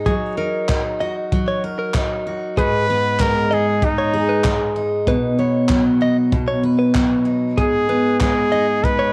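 A clear, up-front trumpet carries the melody from 2.6 seconds, its vibrato and smooth top giving this easy-going, heartfelt acoustic pop fragment a sincere, singing lead. Underneath, a full-bodied jumbo steel-string acoustic guitar is picked up front, finger squeaks and all, while a clean, compressed, direct-recorded electric guitar adds picked arpeggios. A compact cocktail kit keeps a straight feel with a dry, punchy kick and handclaps, and the whole home cassette recording sits in light reverb and studio ambience.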